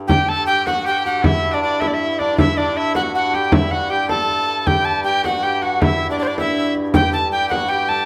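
A shimmering, ringing hammered dulcimer and a smooth, even hurdy-gurdy drone on G2 open this rustic, ancient-sounding medieval dance excerpt in 6/8. At 0.1 seconds, a bright, airy soprano recorder takes the melody up front with tongued chiff and vibrato. An edgy, folk-style shawm adds a second line beside the dulcimer, while a deep frame drum played with soft hands sits close and dry. The band plays live together in one room, bathed in a wet, large studio reverb.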